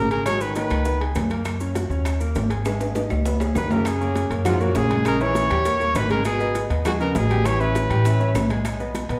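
Over a lively, sunny, straight 4/4 Afro-Cuban jazz rhythm cut from a longer piece, a breathy trumpet with vibrato carries the melody up front alongside a mellow baritone saxophone second line with soft, scooped notes; both play briefly at the start and return at 3.6 seconds during a drum fill, above a brilliant upright piano with audible action noise, a pizzicato steel-strung upright bass, ringing metal-shell timbales, high-tuned congas struck with hard hands, round low-tuned bongos, woody claves and grainy maracas, the band heard from further back in a reverberant large studio.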